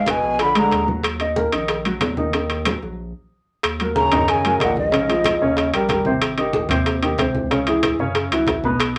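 A breathy, mellow concert flute carries the melody with vibrato and tongued notes from the first moment, shadowed by a clear trombone playing a jazz-style second line with scooped notes, while a deep, thick, saturated sub bass sits underneath. This driving, sophisticated Afro-Cuban jazz excerpt quickly fills in with a warm baby grand piano up front in the accompaniment, ringing metal-shell timbales played close and dry, and tight high-tuned bongos and low-tuned, thin-skinned congas tucked into the background. The flute's tone has rolled-off highs and a slightly unsteady quality, and the harmony moves from Bb7 to Ebm before a stop at 3.0 seconds briefly halts the groove. At 4.0 seconds the flute and trombone return for a short phrase over Bbm7 and Eb7, after which the piano, bass and percussion carry on through Abmaj7 and Dbm to a closing Gb5. A small, wet-sounding room gives the ensemble a close ambience.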